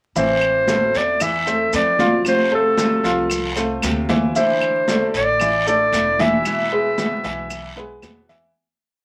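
A straight 4/4 Cuban son and guajira groove at 114 BPM in A harmonic minor sets a sultry, danceable mood, with a clear, up-front classical-style clarinet spinning a motif-based melody over a full-bodied fingerpicked and strummed nylon-string guitar, a concert grand piano playing montuno in octaves, a thumpy pizzicato upright bass tumbao that anticipates the chords, ringing high-tuned congas with slaps and open strokes, a woody claves time line, a raspy guiro and grainy maracas, all moving through Am, F, Dsus2 and E in a small reverberant room under vinyl crackle before fading out from 6.5 seconds.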